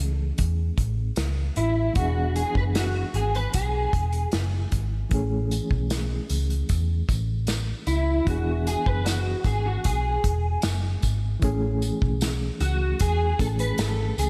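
A straight, unhurried 4/4 groove comes from an unplugged drum kit, entering at 0.4 seconds with a punchy kick, medium-tuned snare and hi-hat played with bundle sticks, up front beside a dark, round, foam-muted picked bass in this dreamy, sunny piece of indie bedroom pop cut from a longer track. A reedy electric piano with fast tremolo and a cassette-tape tint holds the Amaj7 and E7 chords, while a slightly broken-up guitar through a small old amp joins at 1.6 seconds with ensemble chorus and warbly pitch drift. A jingly, band-limited vintage tambourine slips into the background at 5.5 seconds, and light reverb with small-room ambience frames the whole band.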